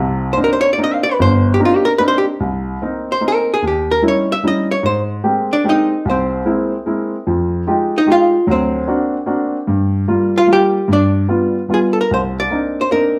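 A swung 3/4 lilt at 148 BPM drives this smoky, late-night jazz piece in C minor, where a warm, natural baby grand piano comps from the start beneath a dark, clean, picked hollow-body archtop guitar that enters at 0.3 seconds and takes an up-front electric solo until 12.1 seconds, all set in a lush large-room reverb over rich chords such as Cm9, Eb7b9 and D7b13.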